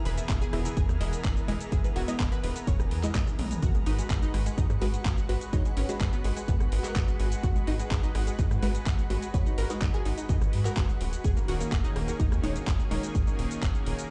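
A lush, warbling unison pad with chorus and sidechain pumping opens this dreamy, bittersweet progressive house excerpt in G# minor at 126 BPM, joined from the start by round, detuned analog pluck arpeggios with chorus and delay and a faint twinkling granular texture with its own reverb shimmering in the background, while a tight, wave-folded sawtooth sequencer bass, a punchy up-front electronic kick and a pop drum kit of handclaps, metallic hi-hats, rim clicks, shaker and toms drive the groove, adding a drum fill at 3.3 seconds, and detuned unison pluck stabs with a noise layer and delay enter at 1.0 second over Emaj7, G#m7 and D#7sus4 chords, all heard as if through a big sound system in a bare room with large studio reverb and a dull top end.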